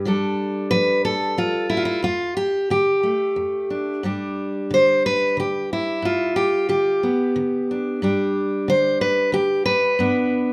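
A full-bodied steel-string acoustic guitar sits up front in a light reverb, its fresh strings and warm tone carrying every note. This short folk passage, lifted from a longer piece, is a gentle, peaceful solo for fingerpicked dreadnought guitar, running from 0.0 to 10.5 seconds. It moves at an unhurried 91 BPM in 3/4 with a straight feel, and the instrument is tuned to A4 = 442 Hz. The harmony opens on Dm/F and shifts to G at 4.0 seconds. The picking spans from a low F2 up to C5, so the single guitar fills the space with both deep bass notes and bright upper tones.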